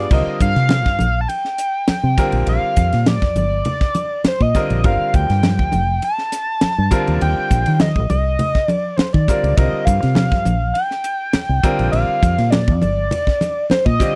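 A shimmering, retro pulse-width synth lead with chorus and vibrato carries the melody over a brilliant grand piano, a dark, round fingered electric bass, a crisp fusion drum kit with a punchy kick and high-tuned snare, and thin-skinned congas struck with hard hands, giving this driving, slick electric jazz fusion excerpt a dry, close 1970s-style studio sound as it moves through lush suspended and extended chords.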